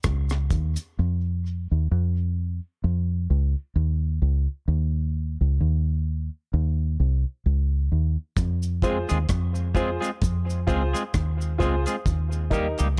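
A dark, reverb-soaked mix carries this hypnotic, spacious dub reggae cut from a longer piece at 65 BPM in F minor, where a round, punchy fingered bass holds the foreground, alone through a break after a brief opening of a tight, dry drum kit and a vintage cabasa, until the kit and cabasa return at 8.4 seconds and a bright, clean hollow-body guitar and woody, slightly detuned upright piano stabs, both trailing dub echo, join at 8.8 seconds.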